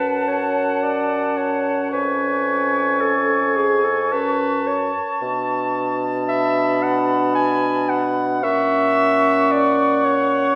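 Solemn and melancholic, this slow, rubato classical movement for wind quintet in F# minor and 3/4 at 55 BPM features a pure, hollow flute with vibrato carrying the melody above a clear, distant oboe second line, a smooth-topped clarinet up front, and a mellow horn and bassoon, the bassoon providing the bass, all heard in a recital hall reverb as chords move from F#m through C#7/E# and Bm7 to F#7/A#, in this short 10.6-second excerpt cut from a longer piece.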